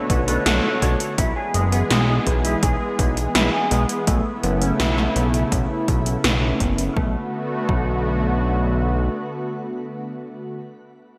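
A fat, detuned sawtooth bass sits up front in this nostalgic, cinematic synthwave excerpt at 83 BPM in B dorian, tuned to A4 = 436 Hz. It moves through Bm7, E and Aadd9 over a punchy, tape-warm electronic kick and 80s pad drums with a gated snare and metallic hats. A smooth, warbling vintage pad holds sustained chords with chorus, sidechain pumping and shimmer reverb until 10.6 s, while a dark, clean electric guitar plays filter-swept arpeggios in the background, and an open, long-sustaining baby grand piano adds stabs only in the opening second beside a barely audible downlifter, all within a bright 1980s-style digital production and a lush hall reverb.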